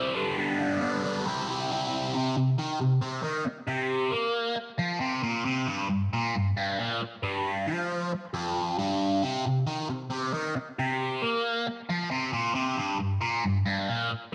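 A lone overdriven electric guitar opens this driving, sunny rock passage from the first second, bright and picked, double-tracked and set up front in a light reverb. The tempo sits at 135 BPM in a straight 4/4, with the instrument tuned to A4 = 438 Hz and ranging from F2 to E4. A phaser colors the guitar's tone, while a slapback echo gives each attack a quick doubled edge. The harmony moves from G to C, then settles at 2.1 seconds into Bbsus24 and Fsus2, with their open, suspended color. A new stretch begins at 9.2 seconds, returning to Bbsus24 before closing on a rootless Fsus4, and the guitar stops at 14.1 seconds as this cut from a longer piece ends.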